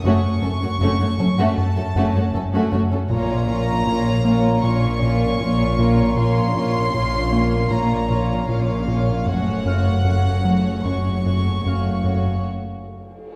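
The recording sits in a wet scoring-stage reverb, heard from further back in the room, which gives this eerie, uneasy suspense cue a cavernous air. A rubbery, hollow square-wave bass with a resonant filter pluck carries the riff and stands out as the loudest part, while cello and double bass sections hold the low end with soft, distant sul tasto bowing. Above them, a violin section plays a floating, pure melody high in its register, and a second violin line and a dark, woody viola section with vibrato fill the middle, all bowed sul tasto. A bright, ringing Celtic harp is fingerpicked in the background as texture. The harmony moves between Gbm and Bbm until the strings and synth bass drop out by 12.4 seconds, leaving the harp and a huge cymbal swell from 12.7 seconds to close this cut from a longer piece.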